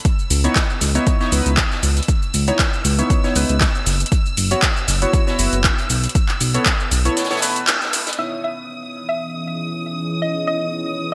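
A bright, 1980s-style digital production sits in a moderate plate reverb, framing this smooth, warm deep house excerpt at 118 BPM in 4/4 with a light swing on the 16ths, in C# minor. An up-front, overdriven electronic kick and a layered house kit of handclaps, shaker and metallic hats with gated reverb drive the groove. A very quiet acoustic jazz kit adds hi-hat and snare from a small room beneath them. A dark sawtooth-and-square synth bass with sidechain pumping moves through C#m9, F#7sus4 and B9sus4. Above it, a retro, glossy chorused polysynth plays pulse-wave stabs with delay, while a clear bowed violin section holds a high vibrato texture throughout. The kick drops out at 7.2 s, and at 8.2 s the polysynth takes on a filter sweep as a soft, round, detuned pluck melody enters with chorus and delay, joined at 9.1 s by a silky vintage string machine with slow-attack sustained chords.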